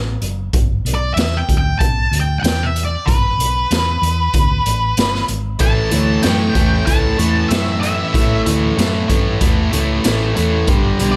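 With light reverb, this brooding, heavy blues rock and southern rock power-trio excerpt opens on a round, punchy hollow-body bass and a gritty garage drum kit with a boomy kick and high-tuned snare in a pumping small room, then an up-front octave-fuzz lead guitar enters at 0.9 s over G and Em/G chords, and a dark, double-tracked overdriven guitar riff joins at 5.6 s as the harmony shifts to A5.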